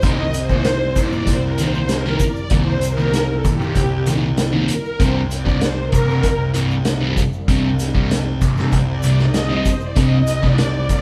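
A straight 4/4 beat at 97 BPM drives this trippy, mysterious psychedelic rock excerpt in C minor, with a vintage acoustic kit of punchy kick, medium-tuned snare and hi-hat sitting up front in a pumping small room, while a grainy egg shaker ticks in the background. A dark, double-tracked fuzz guitar riff with phaser and a distorted edge pairs with an overdriven fuzz bass on C2, alongside a very quiet swarming, detuned drone that evolves. Over them, a bright sawtooth string machine voicing violas takes the solo with slow-attack sustained chords and ensemble chorus, all in a stone room that gives the sense of a band playing live.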